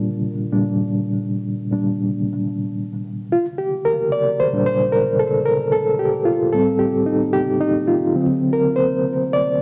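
Soul in Bb major at 75 BPM, this brief fragment of a longer piece has a smooth, lush mood and a gentle 16th-note swing in 4/4. A reed electric piano plays alone throughout, sitting up front with a reedy, worn character and a clean tone heard through its built-in speakers. Fast tremolo, tape echo and cassette coloring give the piano a hazy, homespun feel, and it sounds slightly out of tune, with the recording tuned to A4 = 435 Hz. The harmony rests on a Bb6 chord before the passage turns at 3.3 seconds, moving to Am7b5 at 6.5 seconds and D7 at 8.1 seconds. Light reverb surrounds the intimate home cassette recording.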